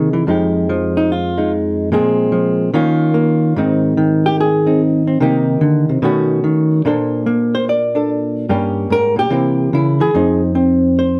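A hollow-body jazz guitar, electric, clean and dark with a compressed, up-front tone and fingered touch, plays a late-night, moody solo jazz passage in F minor at 146 BPM with a swung feel, moving from Fm9 through chords such as Bbmaj9, Gdim and C7 back to Fm7 over about 11 seconds, set in a studio reverb that gives the sense of a live room.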